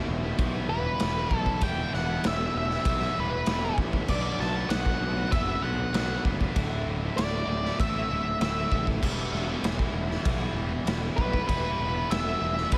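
An octave-fuzz lead guitar leads this restless, bittersweet slice of quiet-loud alternative rock, its dark, distorted melody sitting up front from 0.7 seconds and trailed by analog delay. Beneath it, a raw garage drum kit pushes a straight 4/4 at 97 BPM, its punchy kick, medium-tuned snare, crash and ride cymbals sounding saturated and gritty in a bright stone room that pumps around the hits. Two riffing guitars fill the background from the very start: one a thick, warm fuzz, the other a bright, high-gain distorted tone, both picked across a span from D2 to B4. A fuzz picked electric bass growls low, overdriven and direct, with a bright edge of its own. The chords move from Em to Bm at 4.1 seconds, then to Dsus2 and back to Em, all set in small room ambience and cut from a longer piece.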